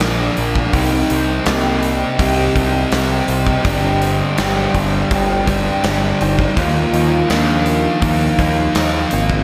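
Thick fuzz guitar sits up front in this dreamy, melancholic shoegaze and dream pop excerpt, its dark, distorted riff coated in lush chorus and matched in level by a growling picked electric bass with bright overdrive. Moving at 82 BPM in 4/4 in C minor, the harmony travels from Bb to Cm, then Gsus4 at 3.6 seconds and Ebsus2 at 6.6 seconds, all within a single section lasting 9.4 seconds. A gated 80s drum kit plays hi-hat, kick and snare with a tight kick, a medium-tuned snare and a polished, airy stone-room gate, while a very quiet overdriven semi-hollow guitar adds a hollow-body riff beneath. Further back, a shimmering, octave-doubled twelve-string acoustic guitar picks boxy arpeggios through ensemble chorus and diffuse ambient delay, and a dark French horn section holds soft-attacked chords with a smooth top and light vibrato. A pure, breathy sine lead carries the melody with a soft attack, vibrato, chorus and delay, and the whole mix is soaked in a huge ambient reverb with an 8.0-second tail.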